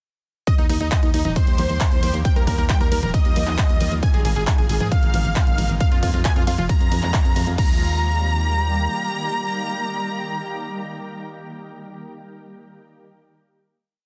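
This is a complete uplifting trance piece in Eb major at 135 BPM in a straight 4/4, euphoric and uplifting from the first bar. It opens at 0.5 seconds directly into the drop. A huge, detuned supersaw lead with tape echo and sidechain pumping carries a repeating sixteenth-note riff over a pedal note, doubled in unison by a very quiet, lush sawtooth pluck with a filter sweep. Underneath, a punchy four-on-the-floor electronic kick sits up front, joined by a programmed big-room kit of metallic hats, claps, ride, conga and crash, with a band accent near the end of the drop. A round, mellow FM bass rolls in sixteenths with its own pumping, and a shimmering, ethereal pad with chorus, reverb and a touch of 12-bit grit holds chords moving from Eb through Abmadd9 and Fm. The drums drop out as the final Eb chord arrives at 7.6 seconds, the bass stops by 8.9 seconds, and the lead, pluck and pad sustain to the close in a dense, heavily limited, mostly dry mix.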